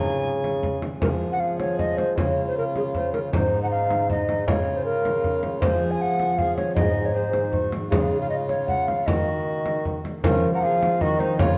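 Through worn, warbling cassette tape and a wet recital-hall reverb comes this courtly, rustic Renaissance-style consort dance in 3/4 at 156 BPM, cut from a longer piece, in which an up-front, hollow, airy tenor recorder with chiff and vibrato carries the melody over a nasal, gut-string violin second line, a ringing thumb-plucked concert harp accompaniment and a distant, roomy bassoon bass with transformer saturation, while a small, bright, hard-handed frame drum joins at 0.4 s.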